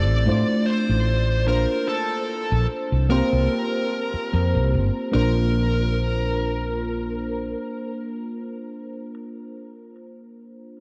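This faded, dreamy vaporwave fragment opens with a woody fretless electric bass, a mellow FM electric piano and a smooth overdriven lead guitar together, all soaked in a cavernous cathedral reverb. The growly, punchy bass sits up front, while the soft, dark piano carries phaser, subtle chorus, cassette tape coloring and tape echo, and the bright, picked guitar sings the melody through its own tape echo. The chords drift from Dm9/A through Bbmaj9 and C7sus4 to Bbadd9; the bass stops at 7.5 seconds and the guitar at 9.1, leaving the piano to ring on until 10.8 seconds.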